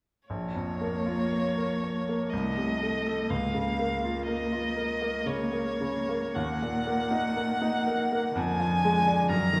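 A single bowed violin carries the melody up front, its rich tone shaped by vibrato, portamento and expressive phrasing, though it sits at a slight distance. Beneath it, a solo cello sings a second line with the same expressive vibrato and sliding portamento, set a little further back. A grand piano, also up front, supplies the accompaniment with a bright, brilliant and open sound whose notes decay quickly. This slow romantic movement for piano trio is in 3/4, with uneven beats and a flexible rubato feel that give it a solemn, elegiac mood. Heard as a passage cut from a longer piece, all three instruments play together from 0.3 to 9.6 seconds, bathed in the wet reverb of a recital hall.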